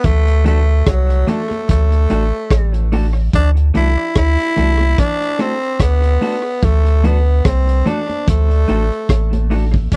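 Laid-back and sunny, this roots reggae excerpt, cut from a longer piece, rides on a relaxed swung groove, with a raspy, growling tenor saxophone carrying the melody through tape echo over a deep, round sub bass sitting up front. A gritty breakbeat drum kit with a punchy kick, hi-hat and rim click also passes through tape echo, while bright, high-tuned congas played with soft hands stay in the background. A clean, fingered electric guitar with a dark, compressed tone joins at 0.4 seconds, and the whole mix has the dry, close feel of a 1970s-style studio.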